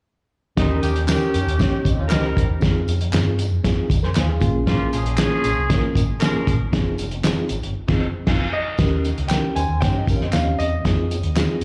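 Heard as a live club gig through the venue's PA on cassette with lossy artefacts, this urgent, driving 1960s-style soul fragment pairs a tight, vintage horn section playing a second line until 6.6 s with a reedy electric piano under fast tremolo, a round hollow-body bass and a muffled, cloth-damped drum kit pushed up front, while tambourine and handclaps sit in the background, a twangy small-amp guitar riff slips in at 1.9 s, the band hits an accent near 7.8 s, and a natural-sounding concert grand carries the melody from 8.5 s.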